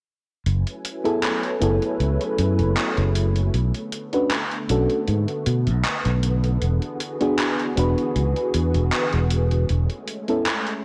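A growly, punchy fingered electric bass sits up front in this nostalgic, woozy vaporwave fragment, alongside a gated 80s digital drum machine's handclaps and hi-hat, a round, warbling FM electric piano with subtle chorus and tape echo entering at 1.0 seconds, and a silky string machine holding phased, ensemble-chorused chords over F#m11, Bm9 and E7 before settling on Amaj9/E, all wrapped in light digital ambience and cassette tape haze.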